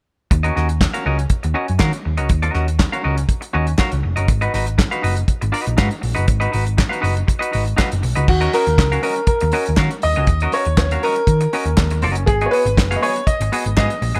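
A clear, open concert grand piano takes the melody from 8.3 s in this glamorous, driving disco cut in Eb minor at 120 BPM, riding over a round, punchy picked hollow-body bass, a damped 70s drum kit with a tight kick, dark cymbals, handclaps and gated reverb, and a bright, clean, compressed semi-hollow guitar accompaniment, set in small room ambience as the harmony moves between Ebm7 and Abm7.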